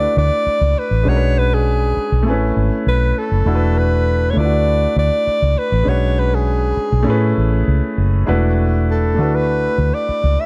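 A straight 4/4 pulse at 100 BPM carries this silky, cinematic soul piece, where a round, foam-muted vintage electric bass sits up front beneath a natural, deep-bassed concert grand piano cycling through D69, Bm69, Amaj9 and E9sus4 chords, while an alto saxophone with a soft-attack subtone sings a jazz-style solo melody over a dark, warm production touched by light small-room reverb.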